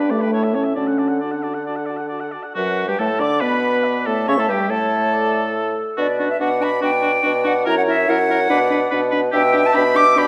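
Set in a wet scoring-stage reverb, this cheerful, spirited classical-period movement for wind quintet moves quickly at 141 BPM in 4/4 and D major, with a rubato feel, and is cut from a longer piece. The airy, distant concert flute carries the melody with vibrato and tongued notes, while the clear oboe adds a second line with light vibrato, a soft attack and a smooth top. The mellow French horn and the warm, background clarinet fill in the accompaniment above an up-front, vintage-toned bassoon bass, as the harmony turns from D toward B minor and ends on G/B at 9.3 seconds.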